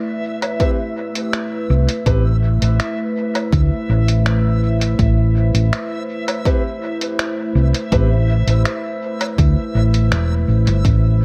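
Hazy, lightly reverberant digital ambience frames this deep ambient dub excerpt in A minor at 82 BPM, where a warbling, detuned tape-like pad sustains chorused chords alongside a reversed, granular swelling texture, a muffled, pitched-down sampler kit of finger snaps, hi-hat and woodblock trails dub echo from 0.4 seconds, a woody upright piano playing echoed stabs and an overdriven electronic kick both arrive at 0.6 seconds, and a round, hollow-body fingered electric bass sits up front from 1.7 seconds.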